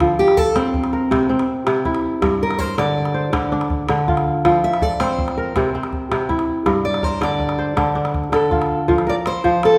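Ringing, crisp kora arpeggios and a small, band-limited calabash open this hypnotic, joyful West African string excerpt in a straight 12/8, joined at 0.2 seconds by an up-front fingerpicked steel-string acoustic guitar that carries the melody as a solo over a cycling F, C, Gm, Dm progression, all bathed in the lush reverb of a recital hall.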